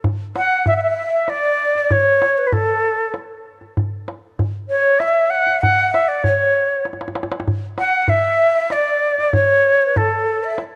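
An airy silver concert flute with vibrato and tongued notes carries the melody in this hypnotic, soulful Persian modal ensemble piece in 3/4 at 97 BPM, shadowed by a quieter, breathy, close-miked ney whose end-blown reed-cane tone wavers unsteadily alongside it, while a tight, warm tombak played with soft hands sits up front and breaks into a drum fill at 6.9 seconds, all set in a light small-room reverb.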